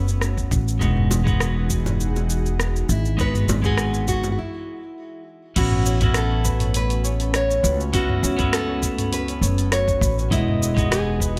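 A bright, fingerpicked nylon-string guitar melody with audible finger squeak opens this smooth sunset chillout excerpt at 101 BPM, over clean picked electric guitar, an airy, breathy pad with chorus in the background, a woody, up-front pizzicato upright bass and a tape-warm R&B kit with shaker and rim click, a gritty, thumpy electronic kick, low-tuned bongos played with hard hands from 1.1 to 4.3 seconds, and a ringing Celtic harp entering at 5.6 seconds with delayed arpeggios as the chords move between A69 and Emaj9 in light studio reverb.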